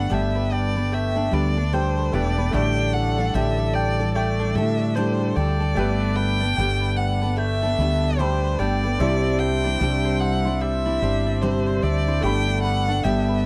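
A round, dark fretless electric bass sits up front in this heartfelt, easy-going pop piece at 74 BPM in G major with a gentle swing, while a rich, focused bowed violin carries the vibrato-laden melody over a full-bodied picked jumbo acoustic guitar, woody double-strung mandolin arpeggios and a bright, worn, slightly detuned upright piano with audible action noise, all moving through Gadd9, Dsus4/A and Cadd9 in a dry, close 1970s-style studio sound.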